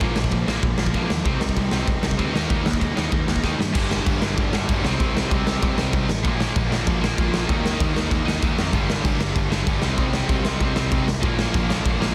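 Dry and densely limited, this short cut from a longer punk rock track charges at 193 BPM in a straight 4/4. Its angry, aggressive drive is led by an up-front, saturated garage drum kit with a boomy kick, a medium-tuned snare, and crash and ride cymbals in a pumping stone room. Behind it, three distorted electric guitars play riffs over Bb, Cm, Eb and Gm: one bright and scooped, one tight and double-tracked, and a dark, sludgy one that sits very quiet. Underneath, an overdriven picked bass growls, and a drum fill at 3.4 seconds launches the longer second passage at 3.8 seconds.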